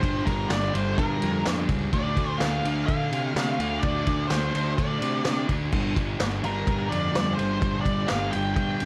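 A menacing, gritty garage rock excerpt opens with all four parts at once: a double-tracked, thick fuzz guitar riff sits low beneath an up-front, octave-fuzz lead guitar melody, while a punchy, overdriven fuzz bass with tube saturation holds the bottom. An acoustic vintage kit of kick, snare, ride and crash sounds saturated and up front, with dark, rolled-off cymbals and a medium-tuned snare, driving a straight beat through chords moving from Gm to Dm and settling on G5 at 5.7 seconds. Light reverb gives the roomy, raw sound some air before the cut at 8.9 seconds.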